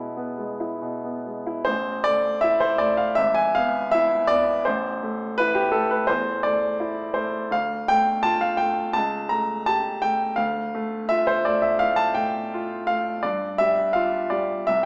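Stormy and bittersweet, this short excerpt from a romantic character piece for solo piano moves at 83 BPM in 4/4 and A minor, its uneven beats stretched and pulled with rubato. A warm baby grand piano, present and polished and up front, spans G#1 to Bb5 as the harmony travels from E through Am and Dm to A7/C#, settling on Dmadd11/G at 13.2 seconds. A moderate recital hall reverb surrounds the playing, though the overall sound is small, as if heard through a modest speaker.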